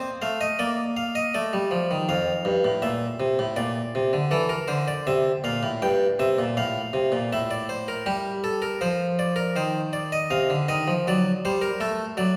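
Solemn and serious, this classical excerpt of a baroque-style two-part invention in a straight 4/4 features a solo harpsichord, bright, airy and plucked in a French style on one set of strings, sitting up front while heard from further back in a recital hall with a wet 1.7-second reverb, its harmony moving from F and B-flat through C before turning to G minor at 8.1 s and closing on D over F-sharp.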